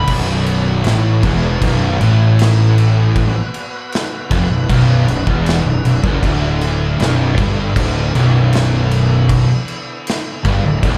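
A slow, straight 4/4 pulse drives this heavy, hypnotic stoner and doom metal excerpt, with a big acoustic rock kit entering at 0.1 seconds on punchy kick, a medium-tuned snare and bright crash cymbals. Up front, a fingered electric bass growls low with overdrive and fuzz, its direct and amped tone both biting and punchy. Two thick fuzz guitars, one warm and one dark, pick the riff very quietly, while an overdriven, double-tracked electric guitar with a bright edge and slapback echo sits in the background on the same low riff. A very quiet tonewheel organ holds full, clean sustained chords through a fast rotary speaker, with chorus vibrato and audible key click. The harmony moves from a B5 power chord to D5 at 6.2 seconds, and the whole thing sounds like a live gig heard through a club PA, with only a little room reverb.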